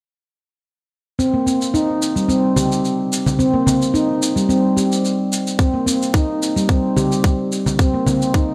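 A ringing, dark stainless-steel handpan, struck with the fingertips, carries smooth arpeggios up front from 1.2 seconds, softened by a low-pass filter and trailed by digital delay, in this meditative organic downtempo excerpt with a light swing. Gritty, sampler-style shaker and congas enter alongside it, and a tight, tape-warm electronic kick drum joins up front at 5.6 seconds. The bright 1980s-style digital production sits in a lush hall reverb.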